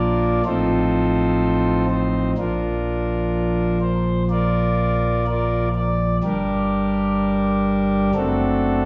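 A classical, chorale-style piece for solo pipe organ unfolds at a slow 62 BPM in 4/4 with a straight feel, set in Bb major and carrying a serene, reverent mood. The organ's principal stop has a smooth, baroque voicing with chiff at the start of each note, sitting up front while spanning from F#1 up to D5. A stone room reverb lingers around the sound, placing the listener further back in the space. The harmony moves from F7/A to Bb, then to Gm, and reaches D7/F# near 8.1 seconds. This brief excerpt is cut from a longer piece, lasting just under 9 seconds.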